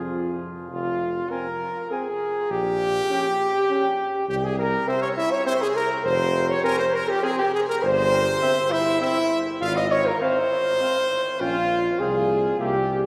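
In a straight three-beat metre, this grave, heroic brass quintet excerpt moves through a sombre chord progression over roughly 13 seconds. A mellow, punchy trumpet carries the melody very quietly from a distance, while a close-miked second trumpet with a clear tone sits up front. A French horn with light vibrato plays the prominent accompaniment, a present trombone sits in the background, a distant tuba anchors the bass with a warm tone, and a long, wet cathedral reverb gives the church or hall setting a roomy glow.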